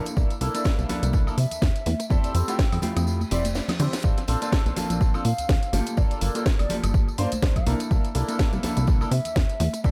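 An echo-heavy, lightly reverberant mix opens this short cut from a longer filtered disco house track at 124 BPM with a swung 16th feel, nostalgic and groovy over a C13, Fmaj9, Bbmaj7, Gm9 progression, as a bright, brilliant concert grand piano with phaser and a dark, clean semi-hollow guitar riff carrying 12-bit sampler grit both pump under the sidechain alongside tape-warm house drums with a cracking snare, hard-handed tambourine and congas in the background, a punchy, funky analog bass up front, and an up-front punchy electronic kick, while an airy, mellow jazz flute enters at 1.4 seconds and the kick drops out at 3.1 seconds beneath a reverse cymbal and drum fill before returning at 4.0 seconds.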